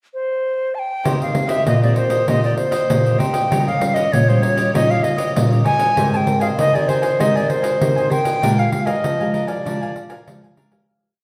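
An airy, reedy wooden flute with vibrato sits up front and plays a tongued, motif-based melody in period phrases, opening alone in a pickup bar before a sunny, lively samba and choro groove in Eb major at 98 BPM takes shape from 1.0 s, with a crisp cavaquinho strumming in sixteenths, a dark classical nylon-string guitar fingerpicking thumb bass and syncopated plucked chords, a second thumb-plucked nylon-string guitar carrying a samba bass figure with a touch of finger squeak, and a jingly pandeiro, all set in a wet recital-hall reverb before a fade-out beginning at 8.4 s.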